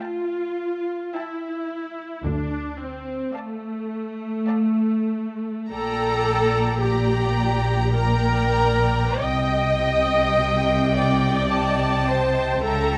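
Solemn and elegiac, this slow romantic fragment for string orchestra in D minor moves at 52 BPM in a rubato 3/4: clear, smoothly bowed violins sing the high melody over a warm second violin line, rich, up-front violas carry the accompaniment, and from 2.3 s focused, lush cellos and expressive double basses with portamento add the bass, all captured with close, detailed microphones and light reverb.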